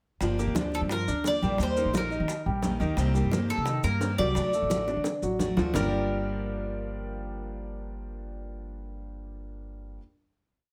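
A straight 4/4 Cuban son and guajira groove at 174 BPM drives this short, sultry piece in G minor: thumpy, woody upright bass plays a syncopated figure up front, while background congas mix slaps and open strokes, low-tuned bongos keep steady eighths with hand bell, and grainy maracas shake. A boxy parlour steel-string guitar strums with muted slaps, a concert grand piano plays a warm montuno in octaves, and from 0.7 s a metallic, double-strung Cuban tres carries a motif-based song melody up front, bathed in plate reverb. The percussion stops at 5.8 s after a drum fill, and the guitar, piano, bass and tres ring out on a final Gm7 chord in a moderate studio room.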